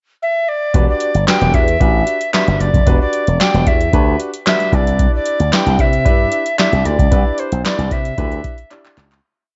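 Steeped in a digital ambience with a softened top end, this slick, late-night early-eighties boogie funk piece opens on a pure, mellow alto recorder playing hook phrases with chiff and vibrato, joined at 0.7 seconds by a booming, tape-warm analog drum machine whose gated-reverb snare is layered with claps over a deep kick and metallic hats, a punchy slap bass through an envelope filter driving a fat syncopated line with chromatic approach notes, and clear grand piano stabbing rootless chords across Em9 and Cmaj9, before a fade-out from 7.1 seconds ends on a closing drum fill at 8.7 seconds.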